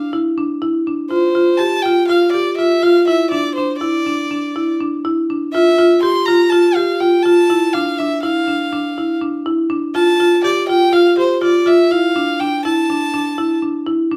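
In a straight 9/8, a marimba with medium hard mallets spins woody, percussive arpeggios while a single bowed violin carries a clear, slightly nasal melody with light vibrato and an airy bow, set a little lower in the mix than the marimba. The mood is restless and pensive, a short contemporary instrumental passage cut from a longer piece. A wet studio reverb places the pair further back in the room, and the violin drops away at 13.6 seconds, leaving the marimba to finish at 14.2 seconds.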